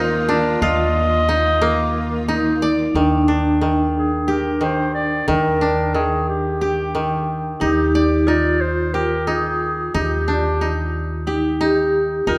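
An up-front koto, plucked with fingerpicks, carries the arpeggios in this restless, shimmering excerpt of contemporary chamber music in an uneven 7/8 metre, its tone dry and woody. Above it, a distant clarinet with a soft attack sings the melody in a classical solo style, while a vibraphone played with medium mallets rings out a metallic second line, its motor vibrato set at a medium rate. A dark pizzicato upright bass with steel strings anchors the low end on a single note. A bright, lush bowed string section sits in the background with intense vibrato, holding sustained chords over a Bbsus4/Eb harmony until 2.9 seconds, when the music moves to Ebmaj7 and the strings drop out, returning briefly at 12.3 seconds. A moderate concert-hall reverb gives the ensemble a roomy sense of space.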